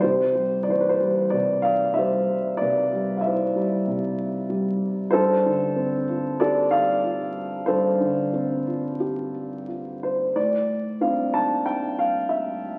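Through the crackle of a very old 78 rpm record and the wet bloom of a recital hall, a dark, woody upright piano plays alone and up front, its action noise audible, in a bittersweet, brooding classical fragment with lyrical rubato that moves from Cmaj9 to G9sus4 before turning toward Dm7/A at 10.4 seconds, cut from a longer piece.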